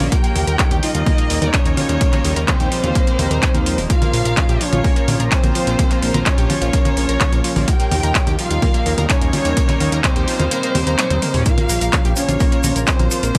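A straight 4/4 pulse at 127 BPM drives this dark, cinematic melodic techno, with a punchy, up-front electronic kick and a techno kit of congas, handclaps, toms and metallic hats. The kick drops out from 10.5 to 11.5 s around a drum fill, and a grainy tube shaker enters at 11.5 s. A fat, detuned analog bass pumps under the sidechain while a smooth, expressive synth lead with chorus and dub echo carries the melody over Eb7 and Bbm chords. A rich chamber violin section adds a bowed second line, a round, warbling analog pluck spins arpeggios in the background, and a very quiet evolving resonant pad and swarming granular drone fill out a dry mix with little reverb.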